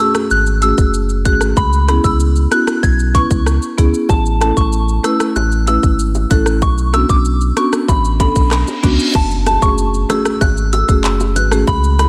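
A soft, pure synth bell carries the melody over woody marimba from the start, soaked in chorus, phaser and diffuse delay, as a tight electronic drum kit with handclaps, rim clicks, shaker and metallic hats, plus a round, up-front sub bass, drives this tough, bouncy dancehall cut at 95 BPM in F# minor, with high-tuned bongos joining in the background at 4.1 seconds and a reverse cymbal rising into an impact at 9.1 seconds, all bathed in dreamy plate reverb.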